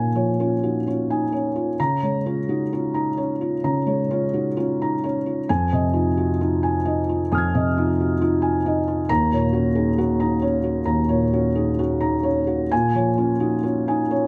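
Reflective and melancholic, this short neoclassical minimalist excerpt features a solo felt-muted upright piano, its thick-felt tone soft, dark and intimate, captured up front by close, detailed microphones in a dry room, drifting in a rubato 4/4 through mostly minor-seventh harmonies across a range from deep bass to high treble.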